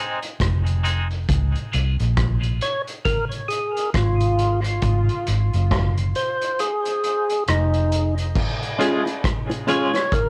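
A loping dub reggae groove, swung on the 16ths, opens on a break: a bright, clean semi-hollow electric guitar drifts through a filter sweep, cassette tape grit and dub echo, while a vintage drum kit with dark cymbals and a punchy kick and a round, foam-muted bass with tube saturation settle in up front. From 2.6 s a fat, lightly overdriven tonewheel organ carries the laid-back melody through a slow rotary speaker and dub echo; the kick falls silent for a spell, and the bass stops at 8.3 s. In the closing section the guitar returns, a worn, slightly detuned upright piano adds woody echoing stabs, and soft low-tuned bongos sit in the background of a spacious, home-recorded cassette sound.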